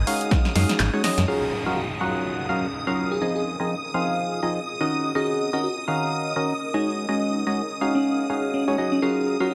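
Bittersweet yet energetic, this short piano house excerpt moves at 124 BPM in 4/4 with a swung sixteenth-note feel, the strings, pad, bass and organ pumping against a sidechain. It opens on an Ab7sus4 chord, with a round, dark FM bass sounding only until 1.2 s, where the band hits an accent, while an overdriven analog drum machine with a punchy snare, handclaps and hi-hat plays a drum fill up front before dropping out at 1.3 s. Underneath, shimmering vintage string-machine violins hold a bright sustained chord, and an ethereal, airy pad with tremolo and built-in reverb sits in the background. A hollow, percussive organ stab carries the riff throughout, its mellow tone colored by chorus and phaser. From 1.3 s a sparkling, bell-like FM electric piano takes the melody with chorus, tremolo and tape echo, as an electronic downlifter sweeps beneath, while the harmony moves through Gbmaj7, Fm7, Ebm7 and back to Gbmaj7, all in a lightly reverberant space.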